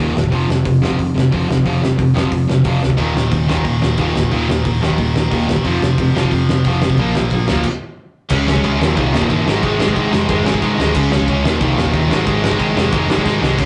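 An up-front, sludgy distorted guitar anchors this rebellious, upbeat punk rock excerpt at 180 BPM in straight 4/4, picking through power chords built on F5, Eb5 and Bb5. A brighter electric guitar sits in the background, and both share overdrive with a growly, amped electric bass picked down low. At 3.0 seconds a heavy, double-tracked high-gain guitar joins with its own bright distortion. The loose indie drum kit comes up front with a fat snare, punchy kick, dark cymbals and a warm, rolled-off top in a pumping studio room. The band drops into a stop at 7.6 seconds, then moves through Db5, Eb and Ab5 changes before a drum fill at 13.3 seconds. Wet reverb and a rough rehearsal-room, cassette-tape character with tube saturation give the whole thing a dusty, lo-fi edge.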